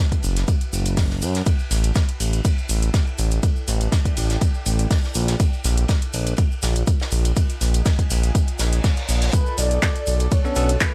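A smooth, up-front synth bass with tube saturation and sidechain pumping anchors this late-night deep house excerpt, riding a deep, tape-warm kick, metallic-hatted electronic claps, a dark-cymbaled acoustic kit, a grainy background shaker and a very quiet granular cloud pad, while a reverse cymbal at 8.6 seconds ushers in a round, horn-like synth lead with chorus and tape echo, a veiled muted violin section and a brief bell-like electric piano stab at 10.4 seconds.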